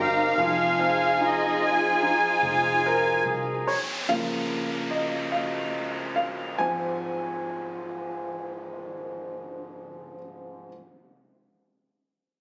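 Heartfelt and emotional, this slow pop ballad in Ab major opens with a reedy, shimmering musette accordion carrying the melody through tape echo over a floating violin section, lush bowed strings, a round, foam-muted electric bass and a clear, up-front grand piano, then at 3.7 s the ensemble drops away, leaving the piano to solo and slow down beneath an electronic downlifter until 10.7 s, all in a lush hall reverb with a phone-in-the-room, compressed feel in a fragment cut from a longer piece.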